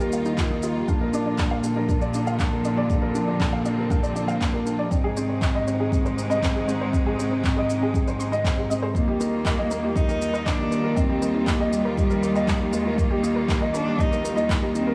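Tender and luminous, this piano and strings electronica moves at 119 BPM in a straight 4/4, cycling through Ebadd9, Bb and Ab. A felt-muted upright piano plays a mellow, intimate riff with audible action noise and digital delay, while a clear chamber string section holds sustained chords and a bright, earthy cello section carries the bass, both breathing with sidechain pumping. A very quiet, round pluck traces arpeggios, electronic shaker and handclaps sit alongside a deep, up-front kick that arrives at 0.4 seconds, and at 8.9 seconds a single close, expressive cello takes the melody with vibrato and portamento, all set in a light small-room ambience.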